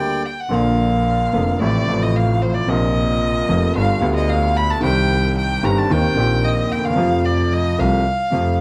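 Close, detailed microphones and a light reverb frame this tense, dramatic tango passage, which moves with a loose rubato feel. A rich, smooth, even bowed violin with vibrato carries a second line that becomes a solo after a brief break at 0.5 seconds, while a warm, open baby grand piano accompanies through chords such as Gm, Bbsus2, G7 and Eb6. At 0.5 seconds a dark, intimate double bass joins, bowed sul tasto with an airy, soft attack and light vibrato.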